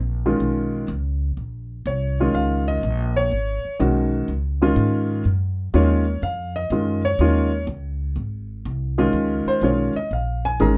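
This jazz piano trio recording is a short slice of a longer piece, with a sophisticated, relaxed mood and a swung eighth-note feel in four. The pizzicato upright bass opens the passage at 0.0 seconds, its steel strings giving a woody, thumpy tone that sits dark and up front in the low register. The concert grand piano takes the melody from 0.3 seconds, sounding intimate and natural, with audible action noise and a deep low end that add to its close presence. The harmony moves through a B69, Bbm7, Abm7, Db, Gb5, Dbadd9, Ab and Db6, giving the single section a colorful, gently shifting character. A light reverb frames the two instruments, and the tuning sits slightly high at A4 = 444 Hz.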